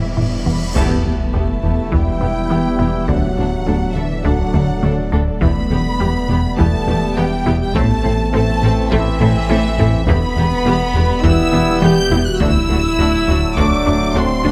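A straight 4/4 pulse at 103 BPM, driven by a taiko ensemble struck with heavy sticks from 0.2 s, underpins this brooding, tense hybrid orchestral and electronic film cue in E minor, cut from a longer piece, which opens on a huge, dark cymbal swell and sub drop lasting until 3.1 s, while lush, focused violins with vibrato carry the melody over a smooth second violin line, rich violas, very quiet cellos and double basses, a warm French horn section holding chords, clear trombones joining at 0.8 s, a deep, saturated sub bass, a punchy, funky analog bass riff, squelchy blip-pluck arpeggios and an ethereal, airy pad, the whole cue captured with close, detailed microphones and light reverb as the harmony moves through Em, D and Am.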